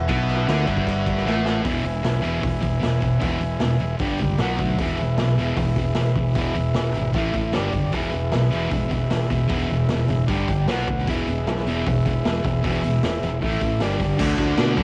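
A thick, bright fuzz guitar riff, double-tracked and up front, opens this raw, swaggering garage rock excerpt alongside sustained chords from a mellow vintage combo organ with light vibrato and a growling, overdriven fingered bass sitting in the background. A gritty, saturated garage drum kit with a boomy kick, medium-tuned snare, hi-hat and crash joins almost at once, adding a short fill at 1.3 seconds before the main section settles into a straight four-four stomp. The organ steps forward with a brief fill at 4.0 seconds, the drums keep a warm, rolled-off top, and the whole home-recorded cassette sound sits in a small, booth-like room.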